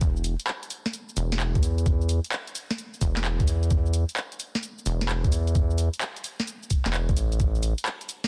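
A gritty, pitched-down electronic kick, a rubbery wave-folded square bass with tube saturation and a filter pluck, and a punchy analog drum machine of snare, handclaps, hi-hat and cabasa, its snare, clap and hats set in a short room, all start together in this bouncy, sunny, swung two-step UK garage groove, cut from a longer piece and framed by digital ambience, vinyl crackle and a dense, heavily limited modern master.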